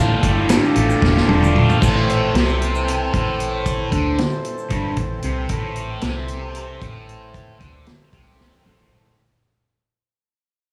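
Psychedelic rock in 7/8 at 228 BPM counted in eighths, this short excerpt cut from a longer piece has a trippy, dark mood in A minor. A thick fuzz guitar sits up front with a bright, double-tracked riff, its distortion colored by phaser, while a fingered electric bass adds a foam-muted low end and a hand-pumped harmonium holds reedy, breathing chords beneath. A vintage drum kit with a punchy kick, medium-tuned snare, dark cymbals and a rolled-off top drives the groove, joined by a grainy tube shaker in the background that drops out at 4.8 seconds. The opening bars rest on D minor before moving to A minor at 1.8 seconds, where a drum fill leads in and the music begins a gradual fade-out. A second drum fill closes things from 8.4 seconds, all within a light studio reverb.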